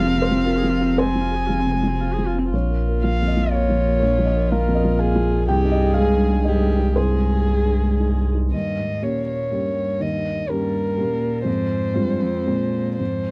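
Neoclassical piano and strings in 3/4, reflective and melancholic, moving with a rubato feel between 112 and 126 BPM in this short cut from a longer piece. A felt-muted upright piano with thick felt sits at the heart of the texture, soft and intimate across its full range, while a single dark violin carries the melody up front with woody vibrato and a smooth top. Beneath it, a rich, distant cello bowed sul tasto adds a floating second line, and a pure, sul tasto viola fills in the accompaniment until about 8.3 seconds. A saturated sub bass, deep and triangle-shaped with a fast attack and sustained tone, anchors the low end up front until 8.5 seconds, when the music turns from its opening section toward an Eb7 before settling back on F minor at 11.5 seconds. The sound is dry and close, like a 1970s studio, touched with light reverb.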